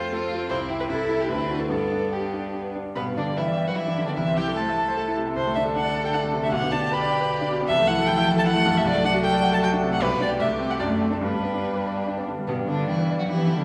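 The recording sits in a reverberant church or concert hall, with a lush recital-hall reverb lingering about 1.5 seconds around the players. This lively, graceful passage, taken from a quick classical-period movement for piano quartet, moves in 3/4 at roughly 141 to 157 BPM in G major, with a flexible rubato feel. Up front, a rich, smooth bowed violin carries the melody with vibrato, while a second, clear and focused violin sounds more distant on a supporting line. A close cello, even and bowed with vibrato, adds another supporting line from its lower register. The bright concert grand piano, brilliant and natural with a deep bass, sits prominently in the accompaniment. All four parts play together for the full 13.6 seconds, with the harmony settling onto G at 1.7 seconds and returning to it through a closing cadence at 11.2 seconds.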